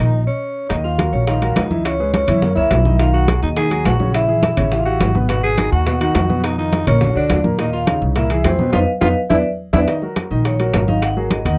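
A growling tenor saxophone carries a breathy, raspy second line beneath the vibraphone melody, its subtone and scooped notes lending grit to this driving, sophisticated Afro-Cuban jazz excerpt in 4/4. The vibraphone, struck with medium hard mallets and motor off, sounds dark and metallic over a natural baby grand piano accompaniment, while a woody, growly pizzicato upright bass sits up front. After a brief stop at the opening, congas played with hard hands, tight high-tuned bongos in the background and ringing metal-shell timbales enter at 0.7 seconds. The harmony shifts from Ebm9 through Bmaj9#11 and Caug7, and the band hits an accent from 8.7 seconds with a drum fill. The saxophone drops out at 9.8 seconds, and the vibraphone takes a solo from 9.9 seconds over Ebm7 moving to Ab5. The sound is a dry, close 1970s-style studio recording with light reverb.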